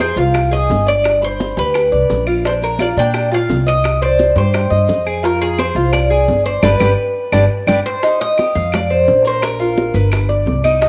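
Nostalgic and danceable, this short cut from a longer Cuban son and guajira piece moves at a brisk 172 BPM in C minor, with the intimacy of a cassette home recording. Two Cuban tres carry the harmony: one up front with a bright, metallic, picked melody on doubled strings, the other spinning warm arpeggios beneath it. An upright bass sits forward too, plucked and growly with a woody steel-string bite. Behind them, damped high-tuned congas, tight bongos, grainy maracas and distant woody claves fill out the percussion. The band hits an accent from 6.6 s, capped by a drum fill at 7.3 s, before a new section opens at 8.0 s on a Cmadd11 chord. A wet spring reverb and small-room ambience give the whole take a homespun, lived-in glow.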